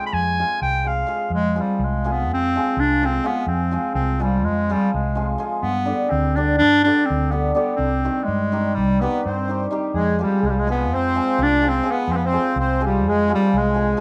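A clear, classical-style clarinet leads up front, carrying a virtuosic, bittersweet melody in this Balkan wedding-band piece in 9/8, cut from a longer performance, and it opens with a short solo passage over the first 1.3 seconds. Beneath it, a hammered dulcimer supplies shimmering, ringing acoustic accompaniment throughout. A dark, round, amped hollow-body electric bass sits forward in the mix, anchoring the low end from 0.1 seconds. At 9.0 seconds a reedy, sweet accordion with a light tremolo tuning joins with a smooth second line. The harmony moves from F minor through G and C minor before settling back on F minor, all in a moderate studio reverb.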